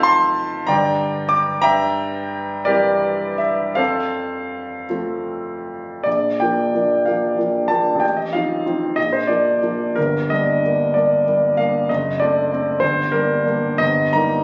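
Romantic classical character piece for solo piano in 6/8 with free, rubato timing, passionate and lyrical in mood, heard here as a short section cut from a longer work. The grand piano sits up front with a clear, polished tone, long sustain and audible action noise that gives an intimate, present feel. Its range spans F#1 to D6, and light reverb surrounds it. The phrase is stated twice, with the second statement beginning at 6.1 seconds, and the harmony moves through chords such as Gm and D7/F# before closing on Eb/G.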